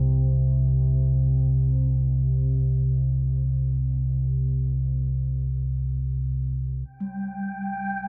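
A deep, rumbling drone with a nasal, detuned, ring-modulated edge opens this ominous dark ambient fragment in free time, sustaining alone until a soft bronze gamelan-type metallophone enters at 7.0 seconds with mellow, shimmering arpeggios on G3, joined at 7.1 seconds by a breathy, wind-like tuned noise texture high above, all floating in a huge ambient reverb.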